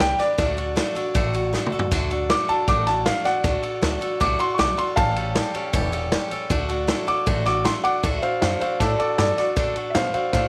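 A small room's ambience and light reverb frame this rollicking, rowdy rockabilly excerpt in D mixolydian at 157 BPM, where a woody, short-sustained upright piano sits up front and carries the melody as a solo through the first 8.0 seconds. Bright, boxy picked swing-style acoustic guitar and thumpy gut-string upright bass, plucked pizzicato, back it the whole way, while a vintage drum kit with dark cymbals, a punchy kick and a rolled-off top drives things along and drops in a quick fill at 1.5 seconds. The harmony moves from D to A7 at 5.0 seconds and back to D, before a new section begins at 8.0 seconds.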